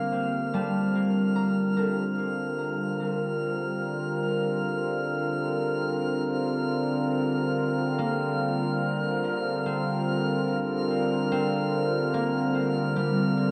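Ambient music in G minor at 73 BPM, reflective and serene, resting on a single Gm7 chord throughout this 13.5-second fragment of a longer piece. A smooth, detuned analog pad sits up front with soft-attack sustained chords, its sawtooth and wave-folded tones thickened by chorus. A concert harp plays ringing, fingerpicked arpeggios, its acoustic tone trailed by tape echo. High above, a glassy texture of drifting overtones hovers on a single high note, bright and calm, with a slow attack, long release, chorus and its own reverb. The whole recording is bathed in a wet cathedral reverb and carries the worn, warbly pitch drift of old cassette tape, giving it a vintage, gently wavering haze.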